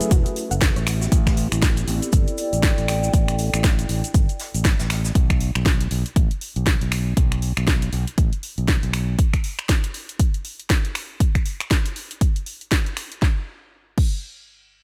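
A late-night deep house excerpt opens on a very quiet, smooth detuned analog pad, a dark, warbling tape-like pad with chorus and pumping sidechain over F#m9 and Am9, and an overdriven house kit with cracking snare, bright hats, finger snaps and shaker. These are joined by a brief chorused analog pluck with digital delay, a bright fingered electric bass with tube saturation that drops out at 9.1 seconds, a distant, roomy brushed jazz kit, and a punchy, up-front electronic kick layered with the house kit, both driving on until 14.1 seconds in a dry, close mix.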